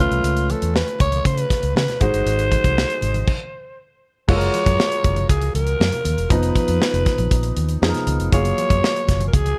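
A breathy, raspy alto saxophone carries the melody up front in this polished 1980s jazz-funk pop excerpt, its vibrato and gritty pop-style edge sitting over a smooth top. A concert grand piano with deep bass and a natural tone supplies accompaniment bathed in lush chorus, while a dark, round, foam-muted fingered electric bass anchors the low end. A modern studio drum kit with a punchy kick, medium-tuned snare, hi-hat and crash cymbal sits mid-forward with a rolled-off top. Very quiet congas, bright and band-limited under hard hands, join at 0.4 seconds. The glossy, breezy groove halts for a stop from 3.3 to 4.3 seconds, then opens into a new section with richer major-ninth colour in a dry, close-sounding mix.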